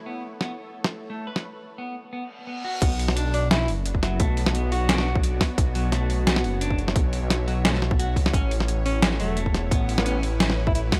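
A warm alto saxophone carries the melody in this excerpt of half-time drum and bass at 174 BPM in B minor. It plays jazz-style phrases with vibrato, a punchy, forceful attack and a smooth top, treated with analog delay. The opening is spacious and tense: a bright, string-like bowed drone with built-in reverb sits in the background, and a dark, clean, picked electric guitar plays arpeggios through spring reverb and analog delay. A very quiet, mellow pulsing texture flickers briefly at the start, and a gritty, pitched-down boom bap sampler-style kit brings crash, hi-hat and a medium-tuned snare. A reverse cymbal leads into the drop at 2.8 seconds, where an overdriven, hard-clipped electronic kick and a deep, rumbling detuned saw bass with transformer saturation arrive up front, and the drone pumps against them. The chords move from A to Bm and back to A at 8.3 seconds, and the whole piece has a dry hardware grit with a digital ambience.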